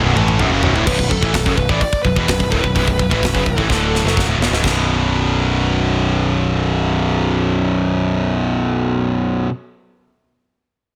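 Heavy metal at 128 BPM in B minor, relentless and aggressive, with two overdriven rhythm guitars in the background and a tight, bright distorted guitar up front grinding out the riff beside a growly, fuzz-laden picked bass, while one of the background guitars drops out after 0.9 seconds. A tight metal kit with bright cymbals and a tight kick sits up front from 0.2 seconds, opening and closing its stretch with drum fills before falling away at 4.8 seconds. A dark, bluesy lead guitar carries the melody between 0.9 and 4.1 seconds, and the harmony moves from Bm to a B5 power chord as the second section begins, all inside a small room ambience.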